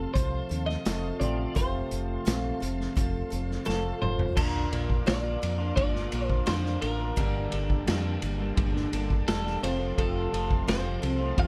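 Folk rock with a heartland rock lean, dusty and wistful, where a bright, clean twelve-string electric guitar carries the melody over shimmering, octave-doubled picked twelve-string acoustic guitar, a twangy, slightly broken-up electric guitar riff through a small old amp, a round, deep dub fingered bass and a punchy vintage drum kit in a pumping small room, while a reedy tonewheel organ with slow rotary speaker and key click sits in the background, the drums entering at 0.2 s and a fill at 3.7 s leading into the second section at 4.4 s, all in a dark, dry production.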